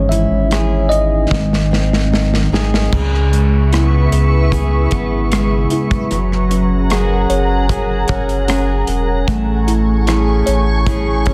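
A bell-like tine electric piano with a phaser takes a solo over the first 2.9 seconds of this melancholic, heartbroken pop ballad in C# minor at 76 BPM, as a fingerpicked, full-bodied jumbo acoustic guitar plays arpeggios through delay, a round sine sub bass sits up front, a dark, small-room drum kit with a tight, softly clipped kick plays a fill from 1.3 seconds, and a glassy, ethereal FM pad with chorus, tremolo and its own reverb enters at 3.3 seconds to hold sustained chords over a C#m7, F#add9 and Amaj7 progression in a dense, heavily limited modern mix.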